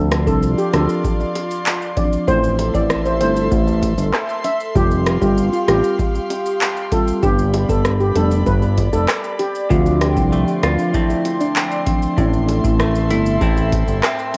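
A shimmering steel pan melody opens this sultry, hypnotic dancehall excerpt over a woody marimba accompaniment, a breathy pad with chorus and sidechain pumping, and a thick, saturated analog bass sitting up front, joined at once by a booming drum machine with a deep kick, metallic hats, handclaps, rim clicks and shaker, plus very quiet, tight bongos. As the pan drops out at 9.5 seconds, a round, keys-like synth lead with chorus and analog delay and a bright, twangy clean electric guitar playing arpeggios through spring reverb enter at 9.7 seconds. The pan, marimba, pad, drums, lead and guitar carry a cassette-tape character, giving the light-reverb home recording a lo-fi haze.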